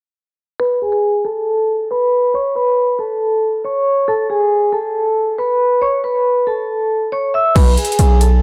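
A soft-mallet vibraphone opens at 0.6 s with a mellow, ringing melody, shaped by a low-pass filter sweep and tape echo as it moves through G#m, Aadd9 and A, setting a dark, eerie trap mood at 138 BPM in a half-time feel. At 7.6 s, over a G#m/B chord, a heavy, saturated 808-style bass and an overdriven trap kit with a hard-clipped kick, metallic hi-hats and a crash cymbal arrive up front, and the excerpt cuts off at 8.4 s. Light reverb and digital ambience fill out the echo-heavy mix.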